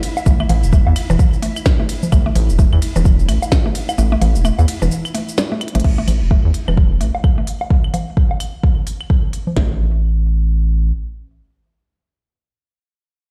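A rubbery, hollow square-wave bass stands out in this minimal techno excerpt, bouncing up front from 0.3 s with a resonant filter pluck and sidechain pumping at 129 BPM in 4/4 with a 16th-note swing. Two overdriven electronic click drum kits carry the beat: one up front with a deep kick and tiny snare, the other adding clicky hats, crash and ride cymbals and cabasa, both re-recorded in a large room. A woody, round, mallet-like FM pluck plays a riff with chorus, sidechain pumping and digital delay, while analog-sounding woodblock, claves and congas, overdriven and delayed, add quirky accents. In the background a grainy, flickering granular texture sits on its built-in reverb until 5.9 s, just after a break and a drum fill at 5.6 s. The mood is clinical and quirky, the sound dry yet ringing as if played on a big system in a bare stone room, with the harmony resting on A5 before the chords fall away at 9.6 s.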